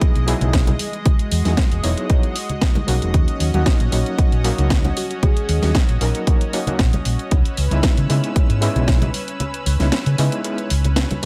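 Nu-disco with a sunny, feel-good glow and a light swing, built on a round, dark hollow-body bass and a punchy electronic kick up front, with a house kit's cracking snare and hi-hat, plus soft-handed congas tucked in the background, the kick dropping out at 9.4 seconds. A gritty, barky electric piano with fast tremolo and digital delay and a lush, detuned unison pad with chorus pump together over Emaj7, D#m7 and C#m7 chords. A soft, octave-layered synth lead with vibrato and a cassette-tape tint surfaces briefly at 5.0 seconds, all in a dry, close-sounding mix.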